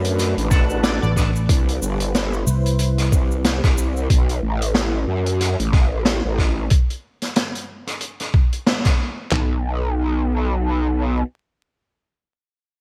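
Swung sixteenths at 92 BPM drive this gritty, swaggering glitch hop excerpt. Up front, a pitched-down, thumpy boom bap sampler-style kit with handclaps and toms sits beside a mid-forward street-band kit soaked in gated reverb. A detuned, wobbling growl bass with tube saturation snarls alongside a round, amped fingered electric bass that plays from 1.0 to 3.1 s. A moody sawtooth analog pad with sidechain pumping and a grainy cabasa both stop at 4.1 s. A mellow tonewheel organ with slow rotary speaker and digital delay lands a brief stab, and a tearing sync lead flickers on D5 in the background. Vinyl crackle dusts the bright 1980s-style digital production over Bm7 and Cmaj7 chords.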